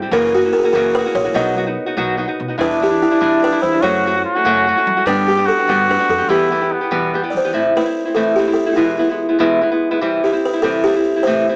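In a straight 6/8 metre, this passionate, dramatic mariachi fragment sets a dark, fingerpicked nylon-string guitar and thumpy pizzicato upright bass beneath a buzzing, woody kalimba melody bathed in plate reverb, while a clear, classical-style trumpet carries an up-front second line from 2.6 to 7.3 seconds, and the bass drops away at 7.5 seconds as the music moves into a new minor key, all heard through a light reverb and a small-speaker sound.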